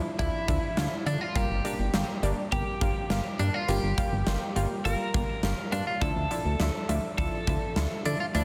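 Driving and nocturnal, this synth-pop cut moves at 103 BPM in a straight 4/4, shifting from Dmadd9 to Gm7 at 1.4 seconds and back to Dmadd9 at 6.0 seconds. A twangy, clean twelve-string electric guitar carries the melody up front with spring reverb and delay, over a round, nasal analog pluck with chorus and a detuned sawtooth-and-square character. A glossy, dark chorused synth bass with a pulse-wave, wave-folded edge and an acoustic arena drum kit, with a punchy kick, a pumping room sound and medium-tuned snare, enter at 0.2 seconds, all inside a dense, heavily limited modern master.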